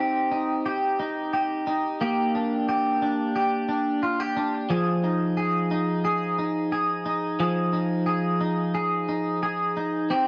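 A bright, twangy clean electric guitar plays alone up front, its picked notes coloured by analog chorus and tape echo as it moves through Cm, Bb6 and Fm7 in an ethereal, melancholic dream pop fragment at 89 BPM in straight 4/4, set in light reverb with a dry, gritty hardware sound.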